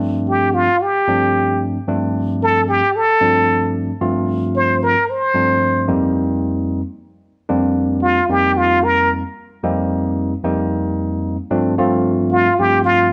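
Jazz in G minor at 112 BPM with a straight 4/4 feel, this slick, intense excerpt is cut from a longer piece. A barky tine electric piano carries the accompaniment throughout, lightly overdriven through a combo amp with a subtle chorus, sitting up front and moving from G9sus4 to F9sus4 and back to G9sus4 at 11.5 seconds. A trumpet with a plunger mute takes the melody as a jazz-style solo, its bright, wah-wah tone placed up front within a narrow span from F4 to C5. The trumpet plays from 0.3 to 9.1 seconds, drops out, then returns briefly at 12.3 seconds. A moderate large studio reverb and a touch of small room ambience surround a dark production, with the recording tuned to A4 = 445 Hz.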